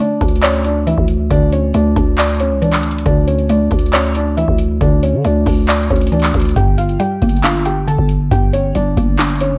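A felt-muted upright piano carries an eerie, brooding melody from the first moment, its soft, intimate tone dulled by a low-pass filter, while a mallet-like synth pluck adds woody, round accompaniment treated with chorus, phaser and its own filtering. At 0.2 seconds a growling, buzzy 808-style bass and a booming analog drum machine arrive together, the bass sitting up front with a fast attack and decaying tail. The drums lay down a half-time trap groove of deep kick, metallic hi-hats and handclaps, sounding as if re-recorded in a large room. The harmony rests on a suspended Dsus2 before turning darker to G minor at 6.6 seconds. The overall sound is dry and gritty, with transformer saturation and cassette tape coloring this short hip hop cut taken from a longer piece.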